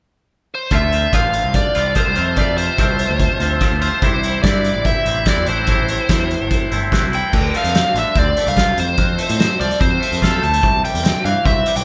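Carefree and upbeat, this indie rock excerpt moves at 145 BPM in a straight 4/4, with a bright, overdriven, up-front lead guitar carrying the melody from 0.5 seconds. From 0.7 seconds a clean, twangy, scooped electric guitar plays a riff, and a growling picked bass with overdrive joins in. A loose acoustic drum kit with punchy kick, dark cymbals, snare, hi-hat and rim clicks sits in a pumping room with a rolled-off top, while the band plays live together under light reverb, cycling through Dm7, F, C and Am before a second section begins at 7.3 seconds.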